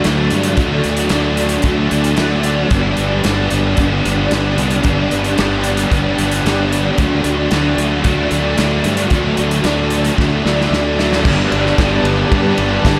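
Hazy and blissful, this short shoegaze and dream pop cut moves at 112 BPM in G major, with a biting overdriven guitar riffing up front through ensemble chorus while a second overdriven guitar sits in the background behind a reverse reverb, all over a loose, acoustic indie drum kit with a tight kick and rolled-off top and a growly, punchy fuzz bass. The whole mix is soaked in a huge ambient reverb, and the chords shift from D to G and back to D before a drum fill at 10.2 seconds. At 11.2 seconds the harmony opens onto Gadd9 as a very quiet, double-tracked crunchy guitar joins, followed at 11.6 seconds by a glassy, ethereal FM pad with slow attack and long release.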